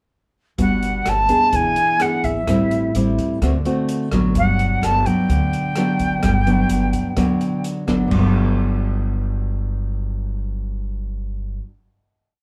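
Breezy and sunny, this short bossa nova piece moves at 128 BPM in a straight 4/4 feel in G major, cycling through Gmaj7, E7, Am7 and D7 before returning to Gmaj7. A metal jazz flute carries the airy, motif-based melody in song-like phrases, with vibrato, a crisp chiff on each attack and an expressive touch, until about 7.6 seconds. Up front, the full-bodied nylon-string guitar is fingerpicked with a thumb bass and syncopated plucked chords in the bossa nova manner, its finger squeaks audible. Beneath them, a woody, thumpy upright bass on gut strings plays a dotted root-and-fifth line, while a dark, smooth acoustic drum kit with a boomy kick, rim clicks, hi-hat and dark crash keeps a soft bossa groove. The drums stop around 8.2 seconds, and the guitar and bass hold a final chord to the end, everything sitting in the moderate reverb of a small room, like a band playing live together.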